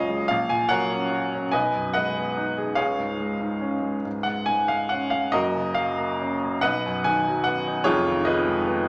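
This is a romantic classical character piece for solo piano, an excerpt cut from a longer work, with a hopeful and passionate mood. It moves slowly at 48 BPM in 6/8, the beats uneven and stretched by free rubato, in F# major. A clear baby grand piano carries everything on its own, sounding intimate and natural, placed up front with audible action noise and long sustain, ranging from F1 up to G#5. The harmony passes from F#/A# through G#m7/B and C# to F#, then on to B before arriving at an Fm7b5 near 7.9 seconds. A large studio reverb adds a wet, spacious bloom around the instrument across the roughly nine-second passage.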